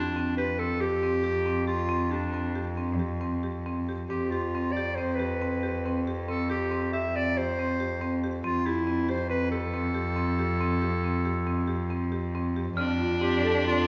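Moving in a straight, uneven five-beat metre, this restless, shimmering contemporary chamber fragment sets a bright, classical-style solo clarinet melody up front over woody rosewood marimba arpeggios and a rich, floating cello bass bowed sul tasto on a low F. At 12.8 seconds a clear, focused viola with vibrato joins on a second line, while a dark, bell-like glockenspiel with soft plastic mallets rings faintly in the background. The ensemble sits further back in a wet recital hall, and the passage is cut from a longer piece.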